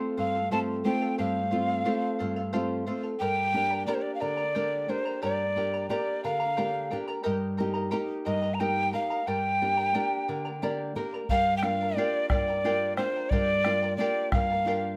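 A breathy, hollow cane quena carries the melody up front from 0.2 seconds, its chiff and vibrato giving an earthy, festive character to this short Andean folk excerpt in a straight 6/8. Beneath it, a fingerpicked nylon-string guitar with audible finger squeak and a shimmering, double-strung charango provide accompaniment over harmonies moving from F/G through Gm and Eb/G, with the guitar taking a fill at 10.3 seconds. A deep, dry bombo enters at 11.3 seconds as the opening section repeats, all set in a moderate studio reverb.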